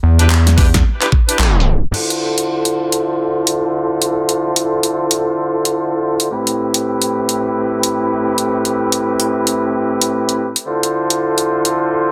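A bright, punchy horn section carries this gritty, playful glitch hop clip in D dorian at 110 BPM, its tight pop-style stabs with vibrato and a smooth top pumping against the sidechain through a low-pass filter and delay. Underneath, an aggressive synth bass, saturated and evolving with oscillator sync, holds the low end up front until 1.8 s. An overdriven, knocking electronic kick joins briefly, and a layered pop drum kit supplies a fat snare, crash cymbal, handclaps and hats, both re-recorded in a small room for a close feel over a 16th-note swing. The band hits an accent at 1.4 s, and a tape stop drags the opening to a halt as a short note of slap bass with an envelope filter snaps in at its tail. The harmony moves from Cmaj7 into a Dm7, Am7 and Dm7 cycle, bathed in a short, wet reverb and a dense, heavily limited master.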